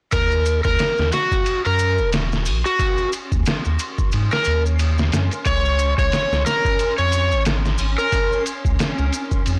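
An overdriven slide guitar carries the melancholic, cinematic melody of this trip hop excerpt in Eb dorian at 90 BPM with a swung 4/4 feel; it sits up front with tape echo until 8.4 seconds over a deep, round sub bass, a muffled, pitched-down sampler drum kit with a thumpy kick and studio reverb, quiet, dry maracas with group handclap in the background, and a dreamy, reversed, detuned texture swelling in from 0.6 seconds, all in a blown-out recording dusted with vinyl crackle.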